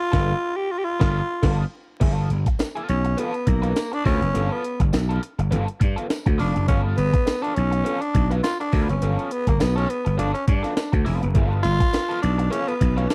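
Funk at 103 BPM in G mixolydian, strutting and playful, this excerpt opens with a band accent on a G9 chord before a growling tenor saxophone, raspy and breathy with scooped notes, takes a jazz-style solo up front from 2.0 seconds. Beneath it, a punchy, overdriven slap bass and a compressed breakbeat sampler-style kit with a thumpy kick and high-tuned snare drive the swung sixteenths, while a bright overdriven electric guitar with wah adds picked accompaniment and a jingly tambourine sits distant in the background from 2.6 seconds. A very quiet overdriven tonewheel organ with key click and slow rotary speaker slips in sustained chords at 11.3 seconds, all captured in a dry, close 1970s-style studio sound with vinyl crackle.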